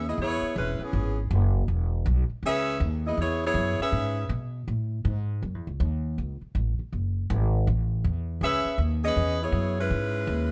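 Close, detailed microphones and light reverb frame this excerpt of big band swing, a sultry, brassy piece in C# minor at 161 BPM. A woody, growly upright bass plucks up front throughout, while a mellow saxophone section carries the melody loosely with vibrato. The saxophones fall away at 4.3 seconds and return at 8.4 seconds as the harmony moves from C#m7 to F#m7 and back.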